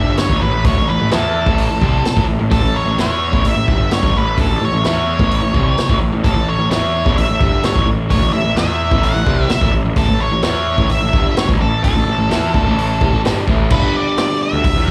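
A swaggering, driving slice of classic rock opens with everything but the drums sounding at once: a dark, fuzzed-out lead guitar carries the melody up front, drenched in distortion with plate reverb, slapback echo and analog delay trailing behind it. Beneath it, a bright, crunchy overdriven rhythm guitar, double-tracked and picked, grinds out the riff with its own slapback echo. A growly, fuzz-soaked picked bass sits forward in the mix, its overdriven tone giving the low end real bite. The vintage acoustic kit enters at 0.2 seconds with a punchy kick, medium-tuned snare, hi-hat and crash, its dark cymbals and rolled-off top lending a mellow, mid-forward weight. The band rides a single chord until 13.7 seconds, when the harmony shifts for a brief new section before the fragment cuts off, all heard through a club PA with a light room reverb that gives it the feel of a live gig.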